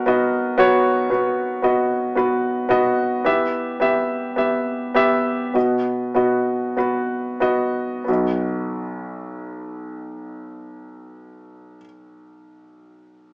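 A clear, intimate concert grand piano sits up front in this short pop excerpt, its deep bass and audible action noise carrying a hopeful, heartfelt accompaniment over a slow 4/4 pulse that slows through the first 8.1 seconds. The harmony moves from B to E minor and back to B before a second section begins at 8.1 seconds. Moderate studio reverb and a small-speaker quality frame the playing, as if heard live in one room.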